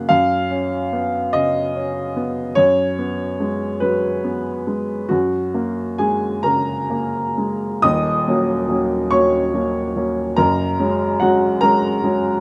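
A slow, rubato 6/8 lilt moves at roughly 41-49 BPM counted in dotted quarters, giving this neoclassical minimalist piano excerpt an unhurried, breathing pulse. A single upright piano carries the whole 12.4 seconds on its own, its woody, natural tone sitting up front with a long sustain that lets each harmony ring. In F# major and tuned slightly low to A4 = 437 Hz, the playing spans from a deep D#1 up to D#6, moving through Badd9/F#, G#m7/F# and F#add9 before shifting at 7.8 seconds to D#m7 and settling back on F#add9 at 10.4 seconds. A light reverb adds a gentle sense of room around the instrument. The mood is hopeful and intimate, like a quiet moment lifted from a longer piece.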